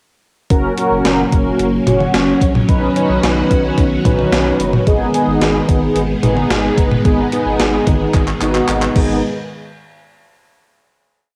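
A gated 80s digital drum machine drives this cool, nocturnal synth-pop piece with a thumpy kick, gated reverb snare, handclaps and syncopated toms under a tape-warm cassette sheen. A brassy, detuned synth brass pushes close-voiced chords, a lush string machine holds slow-blooming pads through ensemble chorus, and a round analog bass pulses in eighth notes through the chorus, as a drum fill from 8.1 s sets up a final hit at 9.2 s, all bathed in moderate spring reverb.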